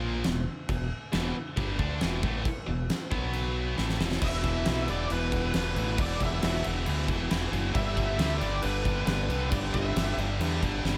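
Lightly reverberant and up-front, this driving, aggressive hard rock passage is cut from a longer piece. A tight, bright, double-tracked distorted guitar riff and a growling, punchy fingered electric bass open together, joined at 0.2 seconds by a huge arena drum kit with a fat snare, boomy kick and crash cymbal, whose fill leads into a new section. There a bluesy overdriven lead guitar, picked and warm with distortion and slapback echo, carries the melody from 4.2 seconds until 10.1 seconds.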